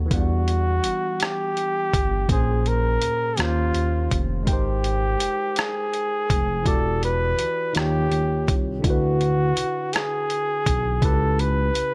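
This is a slow R&B piece in six-eight, cut from a longer work, with a sultry, late-night mood. A close-miked flugelhorn carries the melody up front from 0.1 seconds, its pop-style solo line shaded with vibrato and a warm tone. Beneath it, a smooth synth bass blends sawtooth, square and sine waves into a dark, detuned sound with a fast attack, sustained notes, vibrato and gliding portamento. A barky tine electric piano, clean and played through a combo amp with a phaser, supplies the accompaniment a little further back. The sampler-style soul drum kit is compressed and gritty, with a thumpy kick, hi-hat and rim click sitting forward. The harmony drifts through lush extended chords such as Em9, D#13, G#maj7 and D69 before settling on C#m7b5, and the dry, intimate sound keeps the whole band close.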